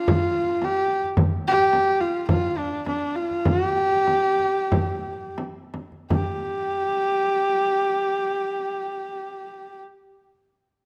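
A wet recital-hall reverb surrounds this brief, windswept and solemn piece of Mongolian folk music, cut from a longer work. A single up-front horsehead fiddle carries the melody, its bowed horsehair strings sounding nasal, husky and earthy, with light vibrato and portamento. A close, acoustic frame drum played with soft hands sits beside it until 6.4 seconds. The music slows from 1.2 to 6.1 seconds, where a new section begins, and the fiddle carries on alone once the drum stops.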